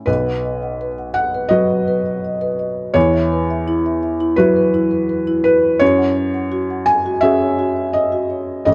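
Rubato 4/4 at 84 BPM, this fragile, reflective neoclassical fragment sets an intimate, up-front felt-muted upright piano with thin felt and short sustain as accompaniment, joined at 0.1 s by round, mellow soft-mallet marimba arpeggios carrying a slapback echo, moving from B to Esus2 at 3.0 s and F#sus2 at 5.8 s under light reverb and close, detailed microphones.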